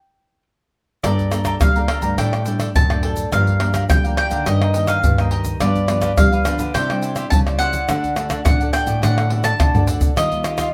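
Samba and choro in G minor at 105 BPM, playful and joyful, in which a round, double-strung picked mandolin carries the melody alone until 1.0 s, when a crisp, bright cavaquinho, a fingerpicked classical nylon-string guitar in the background, a second, full-bodied nylon-string guitar holding the bass and up-front, close, dry percussion of egg shaker, tight surdo, pandeiro and tamborim all join, with a drum fill at 9.6 s in this moderately ambient studio cut from a longer piece.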